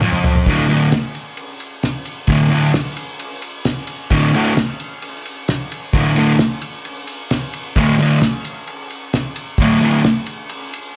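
Rowdy and raw, this straight 4/4 garage rock excerpt, cut from a longer piece, opens with a drum fill beneath a fuzzed, double-tracked electric guitar riff that lands on a D5 chord at 0.5 seconds, driven by an up-front, cloth-damped drum kit with a fat snare, tight kick and dark cymbals, while a grainy egg shaker sits in the background, all captured as a band playing live in one large studio room with moderate reverb.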